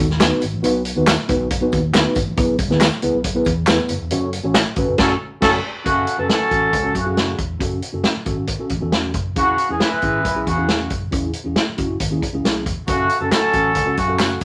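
Uptempo 1960s-style soul at 137 BPM in F# dorian, driving and urgent, cut from a longer piece: a clean tine electric piano and a round, amped fingered bass run throughout beneath an up-front vintage drum kit with dark cymbals and a tight kick, while dry handclaps and tambourine sit in the background, drop out at 4.7 seconds during a band accent that begins at 4.1 seconds, and return at 12.9 seconds, and a mellow jazz-style horn section with light vibrato and soft attack enters at 5.0 seconds, the whole band set in a moderate studio reverb.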